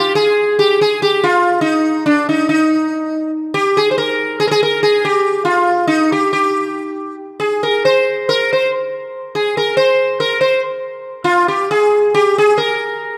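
A solo sitar carries this exuberant, virtuosic Balkan folk passage, cut from a longer piece, playing in 9/8 at 280 BPM in eighths with a straight feel in Eb major. The plucked instrument sits up front, its buzzing tone and shimmering sympathetic strings ringing through a round body across a range from D4 to C5. Close, detailed microphones and a light reverb frame the sitar for the full 13.2 seconds.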